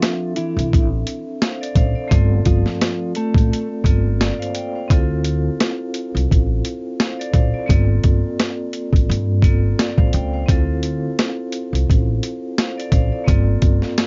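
Dry and muffled, this home cassette recording has its top end cut off at 7.5 kHz, giving a gritty, moody boom-bap hip-hop fragment a hazy tape grain over a swung groove that moves between Dm7 and Gm11. Up front, a compressed, pitched-down sampler kit punches with a thumpy kick and high-tuned snare under the hi-hat, while a woody pizzicato upright bass enters at 0.6 seconds and a bright, ringing vibraphone with medium motor vibrato carries the accompaniment throughout. A clean, fingered electric guitar with tape echo states the melody only over the first 3.7 seconds.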